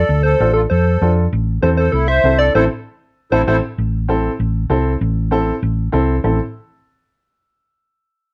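Dark production with light reverb frames this passionate, fiery Latin excerpt in A minor at 195 BPM, where a gentle, warbling FM synth lead with chorus carries the melody and a sweet, reedy accordion with light tremolo tuning plays a second line until 3.6 s, over a round, up-front hollow-body short-scale electric bass and a mellow, woody upright piano that enters at 0.4 s, as the chords move from Dm to Am at 1.3 s, followed by a band accent at 2.6 s.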